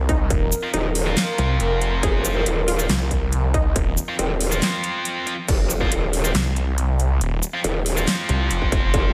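A snarling, detuned sawtooth bass and a wobbling, formant-filtered growl bass sit up front in this chaotic, aggressive half-time heavy wobble dubstep excerpt, joined by a huge snare with metallic hats, a distorted electronic kick that drops out at 5.9 seconds and returns at 8.6, bright distorted guitar stabs, a lush unison pluck melody with cassette-tape grit and diffuse delay, and an evolving, morphing wavetable pad that pumps under sidechain in the background until 5.5 seconds.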